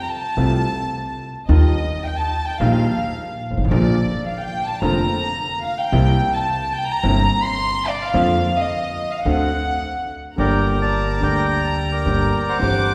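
A floating, pure-toned violin section played sul tasto opens this passionate, dramatic rubato tango excerpt in Bb major at 108 BPM, joined at 0.4 seconds by a smooth, vintage grand piano and a woody, thumpy pizzicato upright bass on gut strings, before a reedy bandoneon takes up the melody at 10.4 seconds in the wet reverb of a concert hall.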